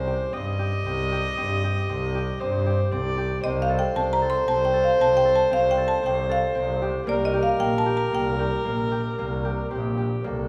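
A dark, floating viola bowed sul tasto, ringing fingerpicked harp arpeggios and a clear, focused bowed double bass open this restless, urgent chamber piece in 7/4 at 115 BPM in C dorian, moving through Cm, F/C and Bbsus2, before a bright, woody marimba struck with hard mallets takes the melody at 3.4 seconds, all set in a wet recital hall reverb in this fragment cut from a longer work.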